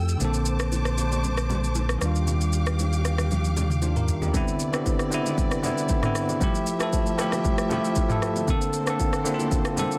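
A straight 4/4 amapiano groove is carried by a layered, electronic deep house drum kit of deep kick, rim click, shaker and toms, sitting up front with a tape-tinged character and a drum fill from 3.3 to 4.3 seconds. Beneath it, a full, sine-toned sub bass with octave doubling holds down the low end with fast attacks and sustained notes, then drops away at 4.3 seconds as the music moves into a new section. A bright, clean, bell-like tine electric piano plays the soulful chord accompaniment close and direct, moving through lush major-ninth harmonies from Bbmaj9 and Ebmaj9 to Cmaj9, Fmaj9 and back to Bbmaj9. A smooth-topped studio string ensemble sustains bowed chords behind it with expressive vibrato and portamento, its level breathing with sidechain pumping. Ringing acoustic congas and bongos, played with soft hands, sit distant in a large room in the background, while the whole short excerpt is wrapped in digital ambience and a dense, heavily limited modern master.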